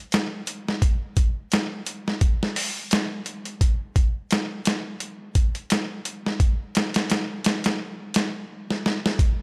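Light reverb and a digital ambience frame this brooding, cinematic trip hop excerpt at 86 BPM in 4/4 with a 16th-note swing of 56%, where an up-front, gritty boom bap sampler-style drum kit, compressed and pitched down with a thumpy kick, high-tuned snare and hi-hat in a small room ambience, plays from 0.1 s to 9.4 s and closes with a drum fill at 8.7 s.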